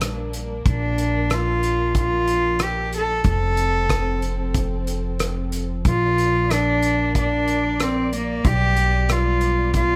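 Heartfelt and intimate, this acoustic folk-pop ballad moves at 93 BPM in a straight 4/4, settled in Bb major and taken from a longer piece. A bowed cello carries the melody from 0.7 seconds, its reedy, nasal gut-string tone and airy bow giving the line a period-style, slightly boxy character as it sits up front. Beneath it, a chamber string section holds sustained chords with soft attacks, light vibrato and a hushed sul tasto colour, played close and intimate. A pizzicato upright bass supplies a woody, growly low end, while a loose indie drum kit plays hi-hat, rim click and a punchy kick in a pumping studio room. The harmony moves through Bb, F and back to Bb before turning to G/B near the end, and the dry, close sound keeps the players feeling near at hand.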